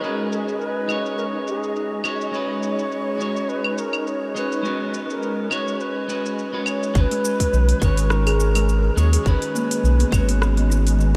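A breathy, reedy low wooden flute with tape echo carries the melody in this meditative organic downtempo excerpt, over twangy clean electric guitar with sampler grit, delay and sidechain pumping, an ethereal detuned pad with chorus, a deep house kit of filtered metallic hats, claves, rim click and shaker, and a dark wind-like noise texture that gives way at 7.0 s to a round, up-front analog bass, a tight electronic kick and a woody kalimba arpeggiating in the background, the mix soaked in a huge, dreamy reverb.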